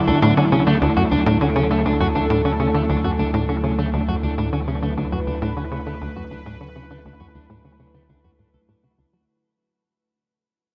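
Bathed in a huge ambient reverb, this luminous, cosmic ambient passage at 101 BPM in D major rests on a single Dadd9 chord, cut from a longer piece and fading out across its 9.3 seconds. A bright, detuned sawtooth pad with chorus and slow filter swells sustains the chords over a round sine sub bass. Up front, a punchy, nasal sequencer bass drives a plucked riff carrying a filter sweep, subtle chorus and tape echo, while a dark electric guitar on the edge of break-up plays fingered arpeggios through tape echo and shimmer reverb.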